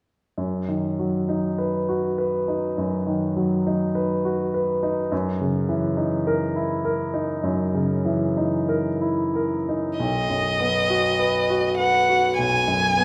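Romantic classical duo for violin and grand piano in B major, tender and warm, moving slowly at 44-52 BPM in 4/4 with a free, rubato feel. The concert grand opens alone at 0.4 s with clear, natural tone, deep bass and long sustain, moving from B/F# through F#6 before the rich, expressive violin enters up front at 10.0 s on a B chord, singing with vibrato and portamento. Both instruments sit close in a reverberant recital hall, and the piece is cut from a longer work, ending at 13.0 s.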